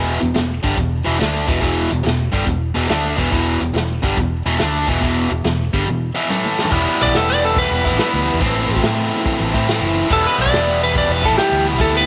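A swung 4/4 groove at 141 BPM drives this gritty, smoky blues rock and southern rock power-trio excerpt in E minor, where a bright, overdriven, double-tracked guitar riff sits up front over a round, foam-muted fingered bass and a punchy vintage drum kit with a natural small-room sound, and after a drum fill at 6.3 seconds the solo section opens at 6.7 seconds, with a dark, slightly broken-up, compressed lead guitar entering at 7.0 seconds over Em, Amadd9 and Em7 as moderate spring reverb colours the mix.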